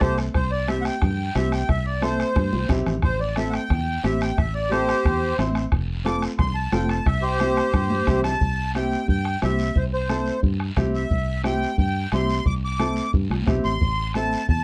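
Joyful and sunny, this cumbia runs at 178 BPM in C major and is cut from a longer piece. A sweet, reedy accordion with light tremolo tuning sits up front and carries the melody as a solo through the first 8.4 seconds, while a brilliant, woody upright piano with audible action noise accompanies it intimately. A round, foam-muted fingered electric bass and a soft-beatered bombo anchor the beat, with drum fills at 2.4 and 7.7 seconds, and high-tuned congas played with hard hands and a raspy guiro sit in the background of a dark, lightly reverberant production.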